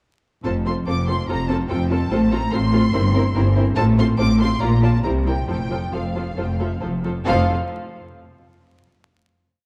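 Set in a straight, brisk 4/4, this short and complete classical-period movement for string orchestra has a lively, spirited mood. The first violins carry an expressive, lush melody, played bowed with vibrato and placed close. The second violins add a more distant line of repeated notes and sustained chords, while the violas, smooth and even, fill in the accompaniment in the same way. Underneath, the cellos sit in the background with a focused tone, marking bass notes on the beats and holding sustained bass. The double basses are clear and up front, doubling that bass line. All five sections play together from 0.4 to 7.5 seconds, moving through a simple cadence before a final chord, all within a dark production with vinyl crackle and a moderate scoring stage reverb.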